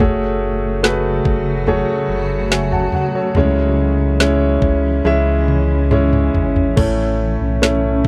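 A smooth, electronic R&B drum kit sets a slow, straight 4/4 pulse at 71 BPM, its knocking kick and woody snare joined by crash cymbal and toms, with a fill from 5.0 to 6.8 seconds, while a deep, full sub bass doubled at the octave holds the low end. Over this, an intimate, up-front concert grand piano, its action noise audible, carries the accompaniment through F#madd9, C#m and A in F# minor, and a cloudy granular pad with its own reverb sustains blurred, evolving chords behind it. It is a heartbroken, emotional pop ballad with a dry, close 1970s-style studio sound, cut from a longer piece.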